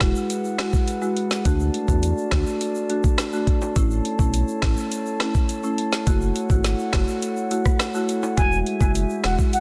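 Dancehall at 104 BPM, summery and sunny, with an up-front electronic drum kit of knocking kick, woody snare with soft clipping and metallic hats under 12-bit sampler grit, a deep, round analog bass sitting in the background, a padauk-barred marimba played with medium mallets, ethereal glass harmonica chords pumping with the sidechain, ringing egg shaker and timbales, and a distant, airy flute with vibrato and tape echo entering at 8.4 seconds as the progression of Eadd9, D, A and F#m7 returns to Eadd9, all in a dense, heavily limited mix with light studio reverb.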